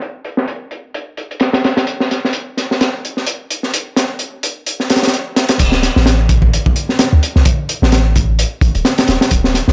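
Funky and raw, this breakbeat excerpt moves at 129 BPM with a swung 16th feel, opening on a crunchy acoustic drum kit alone: gritty, saturated and up front, with a punchy kick, high-tuned snare, dark cymbals and hi-hat, all under a filter sweep. At 5.6 seconds the drop arrives and a deep, boomy 808-style bass enters, a mellow sine tone with a noise layer, fast attack and decaying notes spanning D1 to D2. The dry mix carries little reverb and a rolled-off top.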